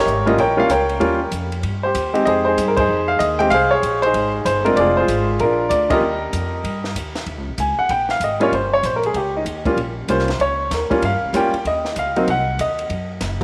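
Playful and swinging, this brief cut from a longer jazz piano trio piece moves at 192 BPM in Eb mixolydian, with a clear, polished, up-front upright piano carrying the melody over woody pizzicato upright bass and a small, dark cocktail drum kit with a punchy kick, high-tuned snare, hi-hat and ride, all set in a wet echo chamber reverb, as the band hits accents at 2.7 and 5.9 seconds before the piano takes a solo from 7.3 seconds over an Eb7 to Ab7 close.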